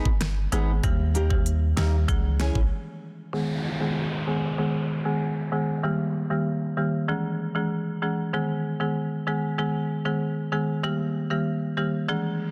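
Dancehall at 96 BPM in G# harmonic minor, this hypnotic, sultry excerpt opens with dark, fingerpicked nylon-string guitar arpeggios, a punchy sine sub bass with a pitch-drop attack, and a layered electronic pop kit of knocking kick, fat soft-clipped snare, crisp hats, rim clicks and finger snaps, all of which drop out by 2.7 s for a brief break. A woody, hard-mallet folk marimba, dry and rustic behind a low-pass filter, enters at 0.5 s and carries on through the break over G#m, D# and C#m, with a filter sweep from 3.3 s while a downlifter and reverse cymbal drift in, the cymbal returning at 12.3 s. The mix sits in light digital ambience under a dense, heavily limited modern master.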